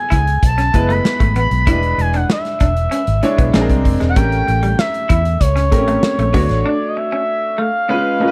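A straight 4/4 groove drives this bittersweet, urban slice of polished 1980s jazz-funk pop, with a punchy, up-front studio drum kit in a pumping room and a dark, round, foam-muted fingered bass moving through chords from F#m11 to Dmaj7. A smooth sawtooth lead with a soft attack, vibrato and gliding portamento carries the melody over a clear, boxy grand piano with short sustain and a bright, clean semi-hollow guitar riff coloured by lush chorus. At 6.6 seconds the bass and drums drop out, leaving the lead, piano and guitar to ring through a brief break in the small room's ambience.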